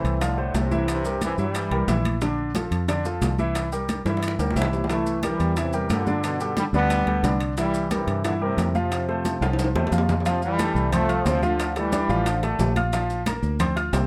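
A sunny, festive salsa excerpt at 179 BPM in F major opens with a clear, polished baby grand piano, a dark, foam-muted fingered electric bass and a brilliant, tight trombone section with light vibrato playing the melody up front, the horns dropping out after 2.0 seconds and returning at 4.9 seconds, while ringing metal-shell timbales, round low-tuned bongos and bright high-tuned congas sit in the background alongside grainy vintage maracas, with drum fills and a close, detailed sound under light reverb.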